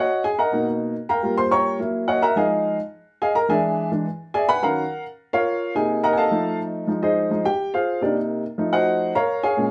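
Fiery yet sultry, this brief jazz excerpt from a longer piece moves at a brisk 212 BPM in a straight 4/4, with a lone upright piano carrying the whole solo from Bb2 up to Db6. The piano sounds dark, woody and intimate, with audible action noise, a boxy body and long sustain, sitting up front even as the listener seems placed further back in a club with a wet, short reverb. Its harmony runs through rich extended chords such as Bmaj7, Ebm9 and F7b9 before arriving on Bbm7 at 9.1 seconds.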